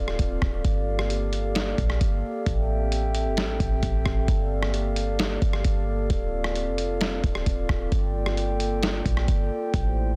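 Atmospheric cloud-rap hip hop in G dorian at 132 BPM with a half-time feel, this hazy, spacious excerpt drifts over chords moving between Dm7, Gm9 and Am7. Up front, a glass harmonica holds glassy, ethereal chords with a slow attack, beating and sidechain pumping, while a deep, boomy 808-style bass with a clean sine tone, fast attack and decaying notes sits beneath. A compressed, pitched-down, muffled lo-fi sampler kit of thumpy kick, medium-tuned snare, rim click and hi-hat, re-recorded in a large room and placed up front, rides through a dense, heavily limited modern master with digital ambience.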